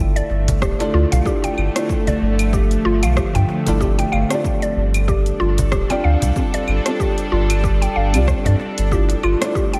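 A felt-muted upright piano and a bowed-like drone open together, the piano soft and dark with audible action noise under thick felt, treated with lush chorus, delay and sidechain pumping, while the string-like drone holds sustained chords with a slow attack, vibrato and its own built-in reverb. This peaceful organic downtempo passage, cut from a longer piece, moves at 94 BPM in 4/4 with a 16th-note swing, and the harmony shifts from Dmadd9 to G7sus4 at 3.8 seconds before returning to Dmadd9. A mallet-like synth pluck joins at 0.2 seconds with woody, warbling FM arpeggios carrying chorus and delay, alongside a deep house kit of claves, hi-hat, rim click and shaker given overdrive. A cajon sits in the background with soft hands and faint snares, and a punchy, overdriven electronic kick arrives at 0.6 seconds. Underneath, a round sine sub bass stays up front and warm, and the whole mix is dreamy, soaked in a lush hall reverb.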